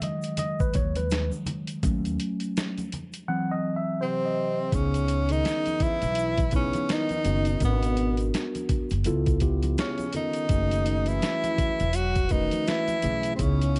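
A mellow, clean tine electric piano with a phaser opens this smoky, cool jazz-hop excerpt, taking a brief solo turn over a gritty, compressed boom bap drum kit with a thumpy kick, a medium-tuned snare and hi-hat, all sampler-style and pitched down. Congas and an egg shaker sit close and dry in the background, their ringing tone adding texture beneath the swung groove. A woody, growly upright bass, plucked and up front, enters at 0.8 seconds. At 4.0 seconds a breathy tenor saxophone takes the melody with subtone and vibrato, joined by a veiled trombone in a bucket mute playing a second line further back. The chords move through rich minor, half-diminished and altered dominant colours, and the whole track is set in light reverb and studio ambience with a dark, warm production that keeps the top end soft.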